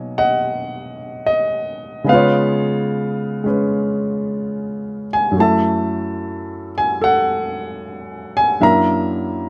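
Close, detailed microphones and a light reverb give this short jazz ballad an intimate, up-front presence. A single baby grand piano plays alone from 0.0 to 9.5 seconds, its tone warm and natural as it moves through a wistful, melancholic passage in 4/4 with a gently swung eighth-note feel. The harmony drifts from Bmaj9 to C#7 and settles on F#m7 before turning to a tense F#aug7 near the close. The playing spans the keyboard from F#2 up to A#5. Cut from a longer piece, the fragment feels like a brief, reflective moment.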